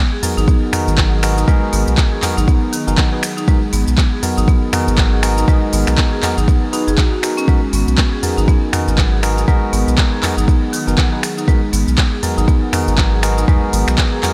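A hard-mallet marimba opens this afro house excerpt at 0.1 s, playing arpeggios with a percussive, boxy small-room tone, sidechain pumping and a diffuse ambient delay. Almost at once, a bell-like, bright tine electric piano adds clean, direct stabs through the same pumping and diffuse delay, while an afro-pop drum kit brings finger snaps, handclaps, smooth hi-hat, shaker and toms. A deep, round sine sub bass with a fast attack and tube saturation enters at 0.4 s, sustaining beneath and pumping with the sidechain, and a layered, tape-warm electronic kick sits up front. The groove moves at 120 BPM in 4/4 with 58% swing on the sixteenths, holding a single G#m7 chord in G# minor, tuned to A4 = 438 Hz. The mood is earthy, set in light reverb and digital ambience.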